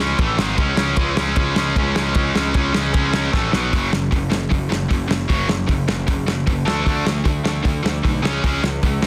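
A bright, double-tracked distorted guitar riff drives this raw, urgent punk rock excerpt, backed by a growly fuzz picked electric bass and a loose acoustic drum kit with a tight kick that enters at 0.2 seconds and plays a fill at 3.3 seconds, all under light reverb in a dense, heavily limited modern master.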